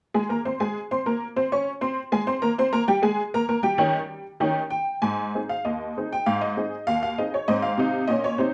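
A straight two-beat ragtime pulse drives this lively, cheerful fragment of a longer piece, played by a solo honky-tonk upright piano that sounds detuned, jangly and up front, its short-sustained notes set in a small room with a moderate touch of reverb, and the music moves into a new section at 5.0 seconds.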